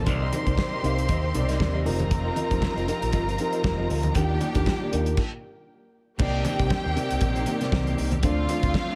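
An up-front soul drum kit with a tight kick and dark cymbals drives this sultry 118 BPM disco excerpt in C dorian, joined by a punchy overdriven fingered bass, a boxy tube-saturated grand piano, a woody, lush string section carrying a second line over a bright, intense background string section holding sustained chords, a clean, mellow electric guitar, and very quiet low-tuned congas, all in a small room, with a stop at 5.2 s before a new section begins at 6.2 s.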